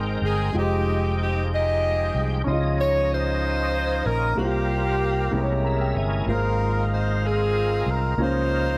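A close, small-room sound with light reverb frames this short slow gospel excerpt in F minor, moving at 63 BPM in a straight 6/8 with a solemn, fervent mood. An edgy, punchy saxophone section carries the melody up front, tight and close-miked with vibrato, ranging from Bb3 to Eb5. Beneath it, a concert grand piano with deep bass plays accompaniment, while an overdriven tonewheel organ holds gritty, thick chords through a slow rotary speaker and chorus vibrato. A dark, round fingered electric bass sits prominently in the low register. The harmony moves through rich extended chords such as Abmaj9, Fm9, Dbmaj9 and a tense C7b9b13, and both piano and organ add fills from 5.3 to 6.3 seconds before the progression settles on Ab69 and Db69.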